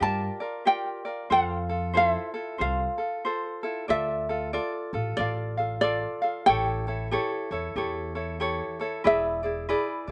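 A light, fingerpicked acoustic ukulele carries the melody in this sunny, languid Hawaiian excerpt at 93 BPM with a gentle swing, while a second, up-front ukulele fingerpicks chords through a slapback echo and a woody pizzicato upright bass on steel strings anchors the low end, the music turning from F major to D minor at 3.9 s in a dry, open-air sound.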